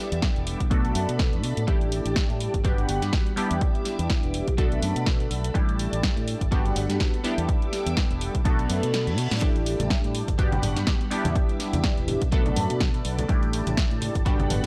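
Filtered disco house at 124 BPM with a swung sixteenth-note feel and a joyful, feel-good mood, cycling through Em7, Bm7, A7sus4 and Gmaj7 under a low-pass filter and sidechain pumping. A bright, warbling, detuned sawtooth polysynth comp with chorus and phaser sits up front over a lush, mellow string machine ensemble in the background, while a fingered electric bass with transformer saturation and a dry, punchy analog kick and snare drive the groove alongside pumping hi-hats. A reverse cymbal enters at 8.7 seconds, and the kick drops out at 8.9 seconds for a drum fill. Then an egg shaker and hard-hand congas enter at 9.4 seconds in the background of this dry, gritty hardware recording with light reverb.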